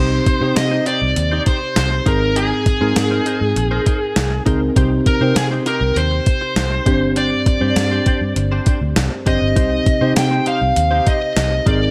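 Light reverb frames this short cut from a longer 1980s-style pop piece in C minor, moving at 100 BPM in a straight 4/4 with a mood that feels both nostalgic and urgent. A gated digital drum machine sits up front from 0.3 seconds, its thumpy kick, hi-hat and gated-reverb snare carrying a tape-warm, small-room character. Beneath it, a dark, round, foam-muted fingered electric bass anchors the low end, while a mellow FM electric piano with chorus fills out the accompaniment with a soft, full-bodied tone and quick, decaying notes over a faint noise layer. A twangy, compressed clean electric guitar picks a bright riff further back in the mix, treated with analog chorus and delay. On top, a smooth overdriven lead guitar with delay sings the melody up front, as the harmony cycles from Cm through Abadd9 and back, then to Gsus4 before settling on Cm again at 9.6 seconds.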